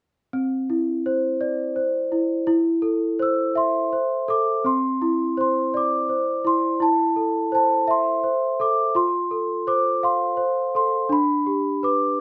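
A large celesta plays alone from 0.3 to 12.2 seconds, its bell-like, sweet tone sitting up front with a vintage, band-limited character and a touch of slapback echo. This gentle, tender children's lullaby moves in a rubato 6/8 at about 56 BPM in C major, tuned to A4 = 441 Hz, and drifts through Cadd9 and Am before a second section brings F and G. Close, detailed microphones and light reverb keep this short cut from a longer piece intimate.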